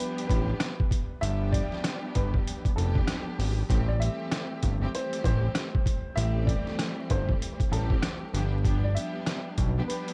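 Tough and dark, this boom-bap hip-hop excerpt rides a swung groove from a gritty, compressed, pitched-down sampler drum kit with a thumpy kick, rim clicks and hi-hat up front, while a fat, detuned analog bass with a filter sweep enters at 0.3 s. A mellow, woody upright piano carries the melody through a dub echo, over a lush bowed string section with vibrato and portamento that has a cassette-tape tint. The chords move from G7 to Am7 and back, all set in a small, echo-heavy room with vinyl crackle.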